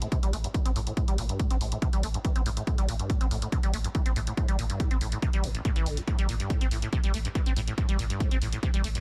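Intense and driving, this short cut of peak-time techno in A phrygian runs at 141 BPM in a straight 4/4, built on an overdriven, layered heavy kick, a thick triangle sub bass held low on A1 under tube saturation and a low-pass filter, analog-flavoured electronic hi-hats re-recorded in a large room, and a squelchy, resonant sawtooth acid riff ranging from A1 to C4 that carries a filter sweep across the full 9.0 seconds alongside lush chorus and delay, with sidechain pumping on the hats, sub and acid line, all pressed into a dense, heavily limited modern master with little reverb.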